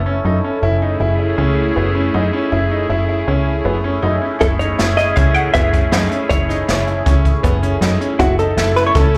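Progressive instrumental band music in 5/4 at 158 BPM, driving and intricate, sitting on a single F#m7 chord in F# dorian in this brief cut from a longer piece, heard live through a club PA with light small-room reverb. A swirling, detuned analog pad with phaser, chorus and slapback echo sustains beneath a punchy, funky sawtooth bass with a plucky filter, while a clear concert grand piano spins arpeggios through slapback echo and digital delay. At 4.4 seconds a dark, clean hollow-body jazz guitar takes the melody, compressed and echoed, as an up-front jazz kit with brushes, a boomy kick and a medium-tuned snare joins in.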